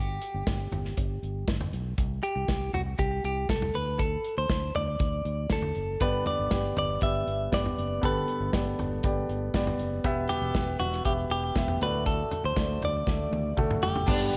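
A twangy, clean electric guitar melody with slapback echo opens this anthemic piano-driven pop excerpt over round fingered bass and a natural country drum kit with punchy kick and dark cymbals, a deep-bodied concert grand piano joins at 6.0 seconds, a drum fill starts at 13.1 seconds, and a shimmering chorused pulse-width pad and a brief overdriven guitar riff arrive at 14.1 seconds, all set in a moderate echo chamber reverb.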